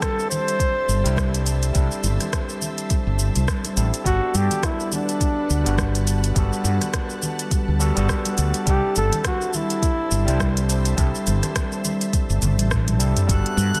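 Light reverb and a faint mains hum frame this relaxed, smooth sunset chillout clip, cut from a longer piece, with a gentle swung 16th-note feel over chords moving between C6 and Gmaj9. A dark, breathy flugelhorn carries the jazz-style solo melody up front, its scooped notes close-miked and touched with tape echo, until it drops out at 10.7 seconds. Beneath it, an overdriven tine electric piano sounds barky and gritty through a combo amp, also with tape echo, while an ethereal, airy pad holds sustained chords in ensemble chorus and its own reverb. A round, mellow fretless bass sits up front with tube saturation, supported by a soft, tape-warm electronic kick and a smooth R&B kit of hi-hat, rim click, shaker and toms re-recorded in a large room, plus bright, thin-skinned congas in the background. A drum fill arrives at 12.4 seconds, and at 13.3 seconds a glassy texture of drifting overtones appears briefly with chorus and reverb.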